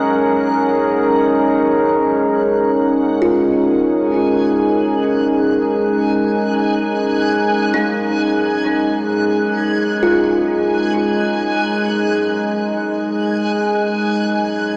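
A smooth, mellow sawtooth pad with chorus holds sustained chords up front in this peaceful ambient fragment, while a reversed, granular swelling texture hovers high above, a distant bowed cello section fades in beneath from 2.7 seconds, and a woody, hollow kalimba rings out arpeggios in the background from 3.2 to 12.7 seconds, the dreamy mix soaked in lush hall reverb with a small-speaker sound.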